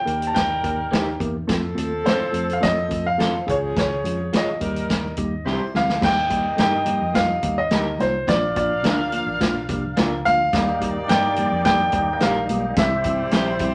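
A clear, up-front baby grand piano carries the melody in this danceable, uptempo 1960s-style soul excerpt at 106 BPM in straight 4/4, its intimate tone showing audible action noise and long sustain. A tight horn section with pop-style vibrato plays a second line behind it, while a reedy electric piano heard through its built-in speakers supplies clean accompaniment and a round, foam-muted fingered bass anchors the low end. The vintage drum kit sits up front with a punchy kick, medium-tuned snare, dark cymbals and a rolled-off top, and an electric guitar through a small old amp adds bright, twangy, slightly broken-up picked stabs in the background. The first section moves through Eb, F, Db, Eb and C before a drum fill at 5.5 seconds leads into the second section, where ringing, high-tuned congas enter very quietly at 6.0 seconds. At 10.5 seconds a gritty, overdriven tonewheel organ joins in the background with thick sustained chords, key click, chorus vibrato and a slow rotary speaker, all set in a wet club reverb.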